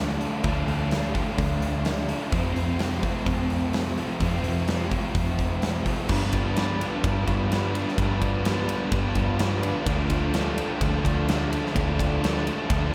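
A huge arena drum kit sits up front, its punchy kick, medium-tuned snare, crash, ride and hi-hat booming in a big room, driving this wistful, dreamy shoegaze and dream pop rock passage cut from a longer piece. Two crunchy overdriven guitars play picked riffs in the background, one shimmering with analog chorus and the other swelling with reverse reverb, while a bright, double-tracked distorted guitar adds a tight riff over a dark, round, foam-muted vintage bass. The whole mix is soaked in lush hall reverb, moving from Dm and F to a G5 at 6.1 seconds before settling back on Dm.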